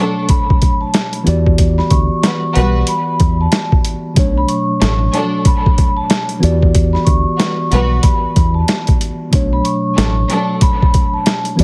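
Dry and heavily squashed like a radio broadcast, this short boom-bap hip-hop cut carries a gritty, reflective mood over a swung groove. A sampler-style drum kit sits up front from 0.3 seconds, pitched down and tape-warm, with a thumpy kick, a medium-tuned snare and hi-hat. A deep dub fingered bass joins at 1.3 seconds, dark, round and punchy, while a mellow, clean tine electric piano carries the accompaniment through Bm9 and Em9 chords. Up high, a vibraphone played with medium hard mallets rings with a metallic, vintage tone and medium motor vibrato through tape echo, its band-limited sound carrying the melody. Soft-attack bowed strings add floating, distant sul tasto stabs, also touched by tape echo, before dropping out at 10.6 seconds.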